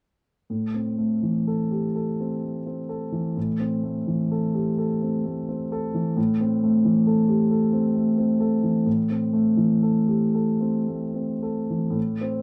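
This is a classical romantic nocturne for solo piano, mournful and melancholic in mood. It moves slowly in 3/4 at 52 to 68 BPM with a free, rubato feel, set in A minor on the opening Am chord and tuned to A4 = 441 Hz. A concert grand piano plays alone from 0.5 to 12.4 seconds, spanning A2 to A4, its warm tone marked by a deep bass, an open character and long sustain. Close, detailed microphones keep the instrument up front, with light reverb adding a touch of space. The passage, cut from a longer piece, stays within a single section that runs to 12.0 seconds.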